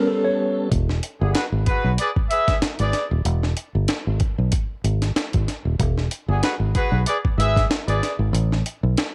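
Gritty and funky, this short cut from a longer funk piece moves at 94 BPM in 4/4 with a light sixteenth-note swing, centred on E mixolydian. It opens with a brief band accent over an A9 chord, where a mellow, round tonewheel organ holds sustained chords through a slow rotary speaker, with key click and vibrato, while a worn, slightly out-of-tune tine electric piano adds clean stabs through its built-in speakers. At 0.7 s the groove settles on E as a punchy, foam-muted fingered electric bass and a compressed, sampler-style breakbeat kit with a thumpy kick, high-tuned snare and hi-hat come in up front, the drums carrying a tape-warm grit. A clear horn section joins at 1.2 s with a smooth top and light vibrato, playing a pop-style second line as an ensemble. The phrase closes on an Asus2 chord near the end, all set in a light reverb.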